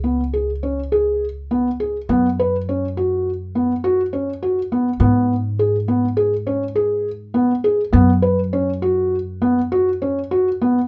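Moving in an uneven 5/4 at 102 BPM with a straight feel, this short contemporary chamber piece, cut from a longer work, has a restless yet hopeful mood. A felt-muted upright piano carries arpeggios between B3 and B4, its sound soft, dark and intimate, with the thick felt giving it a mellow, close-up presence. Beneath it, a pizzicato upright bass with steel strings holds the low end between C#2 and G#2, woody and thumpy, sitting up front alongside the piano but at a lower level. The harmony moves from C#5 through F#sus4 and G#m before returning to F#sus4, keeping the mood suspended and searching. Both parts play together from the opening through roughly 10.9 seconds, bathed in light reverb.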